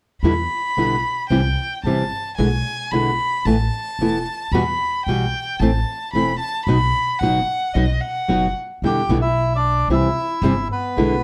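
This dramatic, tense tango excerpt, cut from a longer piece, opens at 0.2 s with a single bowed violin, a fingerpicked nylon-string guitar and a pizzicato upright bass sounding together in a loose, rubato feel. Up front, the violin plays a rich, focused secondary line with vibrato high in its range, while the small-sounding guitar accompaniment carries audible finger squeak and the woody bass anchors the low end. Chords move through Em7, C, E7/B, Asus2 and Am before resolving on B. The violin drops out at 8.6 s, and a reedy, mid-forward bandoneon enters with the melody at 8.9 s as the harmony returns to Em7 and C. A moderate studio reverb and a dark, warm production tie the whole ensemble together.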